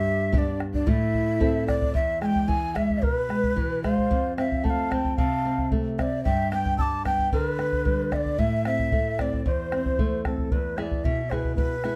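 A straight 2/4 pulse carries this wistful, earthy Andean folk excerpt, with a deep, dark bombo entering at 0.3 s, close and dry, beneath a fingerpicked nylon-string guitar that sits up front with a classical warmth. A breathy, bright wooden quena leads the melody with vibrato, tongued notes, reedy lifted highs and a slapback echo. A second, mellow quena adds a hollow, straight-tone line in the background until 10.2 s, and the ensemble sounds in a small, wet room.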